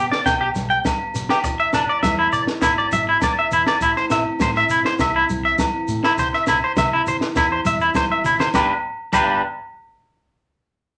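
A twangy, slightly broken-up electric guitar plays arpeggios up front in this sunny highlife guitar band excerpt at 101 BPM in G major, moving through G, E7, Am and C over a picked parlour steel-string acoustic guitar, a compact cocktail drum kit with a punchy kick and high-tuned snare that plays a fill at 8.1 seconds, a round, dark dub bass in the background, ringing, distant agogo bells, bright, damped congas and a grainy shekere, set in a wet club reverb.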